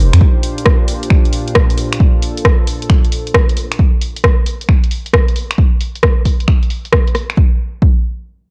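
An up-front, overdriven electronic kick drum anchors this short, sunny and soulful UK garage cut, a two-step groove at 134 BPM in Bb major with a 67% swing on the sixteenths, running from 0.2 to 8.0 seconds. Beside it, a dry, punchy analog drum machine supplies finger snaps, hi-hat and rim clicks until 7.4 seconds, its hats and snare darkened by low-pass filtering, while a smooth, detuned sawtooth pad with a slow attack holds mellow chords under chorus and sidechain pumping for the first 3.8 seconds. The production is dark and warm with little reverb, and the whole thing is cut from a longer piece.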